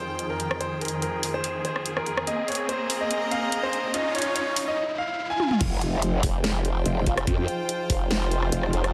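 Aggressive and chaotic, this half-time wobble dubstep excerpt at 144 BPM in F minor opens with a clear, intimate grand piano melody carrying dub echo and audible action noise, set over huge, lush supersaw chords under a sweeping low-pass filter and pumping sidechain, a rich, reedy chamber string section in the background, a produced dubstep kit with a huge snare, and a background electronic riser. After a drum fill, the drop hits at 5.6 seconds with an impact, a knocking electronic kick and a growling, saturated bass up front, joined at 6.2 seconds by a detuned, formant-swept wobble bass with chorus and overdrive. Very quiet, distant brass stabs surface briefly in the drop, all within light digital reverb as the chords move from Fm7 through Abadd9 and Dbadd9 back to Fm7.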